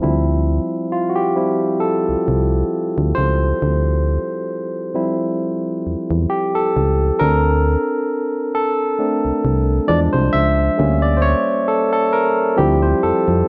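Late-night and sultry, this short neo-soul and R&B excerpt, cut from a longer piece, moves at a slow 67 BPM in D minor with a gentle 16th-note swing. A bright, barky tine electric piano carries the accompaniment up front with a clean, direct tone, and it is featured as a solo across the whole passage. Underneath, a solid FM bass sits close and punchy, its round, dark digital tone striking with a fast attack and then decaying. The harmony rests on Dm11 before shifting to Bbmaj9/D at 7.2 seconds, then passes through E7b9 and C13b9 and returns to Dm11 at 12.6 seconds. Light reverb and a digital ambience surround the pair, while a worn cassette-tape character adds warbly pitch drift that gives the sound an aged quality.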